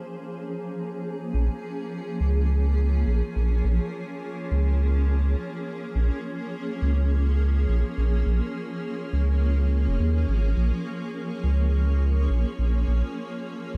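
A granular cloud pad opens this meditative, hazy stretch of ambient dub, fading in slowly with blurred, detuned chords that drift and evolve in their own built-in reverb. The pad sits low in the mix, a soft cloudy bed that sustains through the whole passage. At 1.3 seconds a round sine sub bass enters, deep and up front, with a fast attack and long held notes that anchor the haze beneath it. The groove rests on a gently swung sixteenth-note feel in four, though the music stays spacious and unhurried. The overall sound is close and fairly dry apart from the pad's own reverb, and the recording is a section taken from a longer piece.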